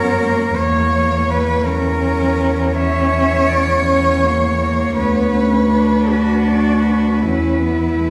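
Solemn and yearning, this short passage cut from a longer classical piece is scored for a cello ensemble of four single players, all bowed with soft attacks and sounding together from 0.0 to 8.1 s. The tempo is a slow 54 BPM counted in dotted quarters within a 12/8 metre, and the rubato feel lets the phrases breathe freely, with tuning set to A4 = 439 Hz. The top cello carries the melody between B4 and E5 with vibrato and expressive portamento, yet it sits somewhat softer than the others. Beneath it, an intimate second cello plays close and up front with an airy sul tasto tone and light vibrato, while a rich-toned third cello supplies accompaniment in the middle register, also sliding between notes with vibrato. The bass cello matches the second line's hushed, breathy colour, anchoring the harmony as it moves from F# through A#dim/E and Bm/D toward a rootless Aadd9/E, and the group is heard from further back in a wet recital hall with a 1.4-second reverb tail.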